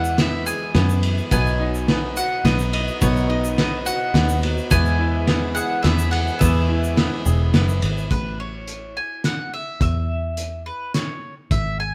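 This indie folk excerpt opens on a mellow, round mandolin melody with doubled strings, carried over a woody upright piano with audible action noise and a shimmering, octave-doubled twelve-string acoustic guitar with finger squeak. A second, slightly detuned piano adds very quiet arpeggios, a grainy tube shaker ticks along, and a punchy, foam-muted electric bass sits up front. At 0.2 seconds a cloth-damped, muffled drum kit joins with a fat snare, tight kick, dark cymbals and a gritty, saturated character, working across hi-hat, ride, snare and kick. At 1.3 seconds a very quiet flute section floats in with airy, vibrato-tinged sustained chords, while the harmony moves from E to B and back to E in a steady 3/4 at 106 BPM. At 8.1 seconds the pianos, guitar and flutes drop away and the chord shifts to A, leaving mandolin, bass and drums to carry the warm, anthemic, building feel in a lightly reverberant room that sounds like a band playing live together.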